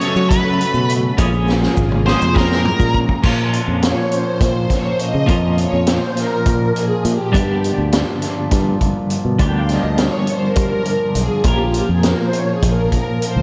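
Hypnotic and trippy, this excerpt from a longer psychedelic rock piece runs at 204 BPM in a straight 7/8, centred on Bb dorian and steeped in a dreamy, lush hall reverb. A dark, fuzzed octave lead guitar carries a short melody through the opening 3.0 seconds, while a clean, compressed twelve-string electric guitar with tremolo plays a riff and a sawtooth string machine voicing violas holds soft-attack chords with ensemble chorus. Up front, a vintage acoustic kit with a punchy kick, high-tuned snare and dark cymbals drives the groove and plays a fill into the second section, joined from 0.2 seconds by a fingered electric bass and, briefly, a grainy, bright tube shaker tucked in the background. At 3.2 seconds the mellow string machine takes a solo over a reedy, nasal hand-pumped harmonium drone breathing beneath. The harmony moves from Gbm and Bbm7 to Bbm, shifts to G, and settles back on Bbm.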